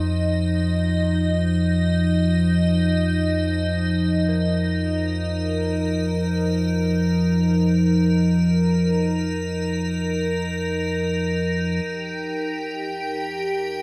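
Dark and unsettling, this dark ambient drone drifts in free time, a short passage cut from a longer piece. A deep, ominous drone rumbles and warbles up front from the start, its vintage, wave-folded tone sitting between F2 and F3 with slow attacks, long releases and its own reverb. Above it, an icy glass pad spreads a crystalline, airy shimmer from Eb4 to G5, detuned and thickened with chorus and a noise layer. A very quiet synth bell traces eerie, inharmonic arpeggios between Eb4 and Bb4, its mellow FM tone striking fast and decaying until it drops away at 11.9 seconds. From there the drone and pad settle onto an Fsus2 chord to close at 13.8 seconds, all of it bathed in a huge, wet reverb with an 8.1-second tail.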